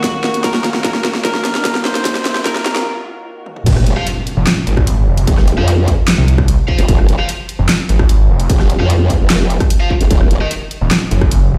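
Set in light, large studio reverb and heard through a big sound system in a bare room, this aggressive, chaotic half-time heavy wobble dubstep opens with a slightly broken-up electric guitar melody under a filter sweep, a nasal unison pad in the background, a dubstep drum kit with a huge snare and bright hats, a distorted electronic kick and a very quiet riser and impact, then drops at 3.7 seconds into a wobbling, formant-filtered growl bass, double-tracked fuzz guitar stabs and a snarling, detuned saw bass that grinds on until 11.6 seconds.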